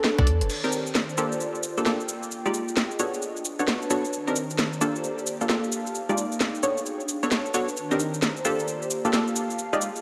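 A layered electronic garage kit and an airy, breathy pad open this soulful, bouncy two-step garage excerpt at 132 BPM, the kit carrying a cracking snare, warm hats, rim clicks, shaker and crash with a small-room character that sits up front. The pad floats beneath in a mellow detuned blend of triangle and sawtooth with a noise layer and a moving notch, its slow attack and long release softened by chorus and pumping with sidechain. At 0.2 seconds a short, tight 808-style sine bass with a noise layer lands once, while punchy sawtooth chord stabs enter and run until 9.9 seconds, vintage and warbling with a detuned filter pluck, chorus, phaser and dub echo. The stabs trace a looping minor-ninth progression of Cm9, Gm9, Fm9 and Bm9, with the 16th-note swing giving the groove its lilt. A lush hall reverb of moderate size wraps the mix in a roomy glow.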